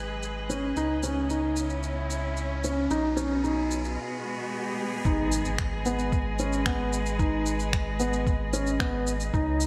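In a moderate echo-chamber reverb, this cinematic, intimate piano and strings electronica excerpt in G# minor at 112 BPM sets a soft, felt-muted upright piano riff with tape echo up front, over veiled, con sordino string quartet chords and a round, deep analog bass that both pump under sidechain, with an electronic shaker and finger snaps alongside, while an electronic riser and swell build toward a drop at 5.1 seconds, where an impact lands and a muffled, thumpy electronic kick drum enters.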